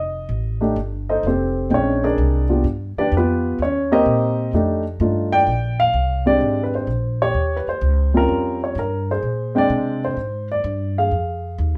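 A dark, mellow baby grand piano carries the melody from the first moment, its intimate, natural tone showing audible action noise and short sustain, over a woody pizzicato upright bass on steel strings, both up front in this warm, swinging jazz piano trio excerpt at 128 BPM in Bb mixolydian, where the piano takes a solo through the first 5.5 seconds over chords such as F9, Bb13 and Cm7 before the harmony moves to Eb13 and reaches Fm7 at 11.1 seconds, heard in moderate studio reverb with the band playing live in one room.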